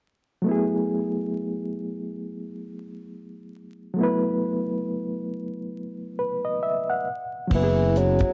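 A reedy, barky electric piano opens this sultry, soulful neo-soul and R&B fragment at 0.4 s, lightly overdriven with a fast tremolo and heard up front as if through its own built-in speakers. It carries the accompaniment alone over a lingering F#m11 in F# minor at a slow 68 BPM in 4/4 with a gentle 16th-note swing, tuned a touch flat to A4 = 435 Hz. The chord drops out at 7.1 s. At 7.5 s a mellow bassoon enters in a classical style, playing a brief solo melody with a soft attack and light vibrato. At the same moment a bright, growly fretless electric bass sustains a low F# and a damped 1970s drum kit adds crash cymbal, hi-hat and a tight kick as the harmony moves to F#9sus4. The dry, close, small-room sound and vinyl crackle give the fragment an intimate, vintage studio feel.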